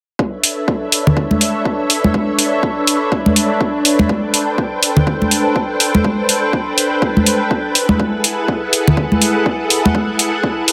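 Silky, vintage string-machine chords with ensemble chorus and sidechain pumping arrive with a deep, overdriven kick at 0.2 s to open this hypnotic deep house fragment, joined by an up-front, distorted hi-hat and, from 1.1 s, close, dry congas with hard hands, as the swung groove moves through Bm11, Am11 and F#m11 in a moderate digital room reverb.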